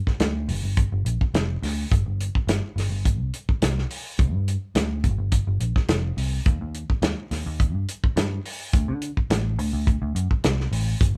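A small, moderately reverberant room holds this short cut from a longer soul blues performance, captured as a band playing live together. The mood is soulful and smoky, riding a straight-eighth 4/4 feel with a slight swing on the sixteenths. An acoustic drum kit sits up front, dry and lo-fi, its hi-hat, tight kick and medium-tuned snare sounding muffled and warm with a rolled-off top. A vintage electric bass, picked and foam-muted, sits just as close, dark, round and punchy through its amp, moving between F1 and D3. Both parts enter within the opening fraction of a second and carry on together until the cut ends at 11.1 seconds.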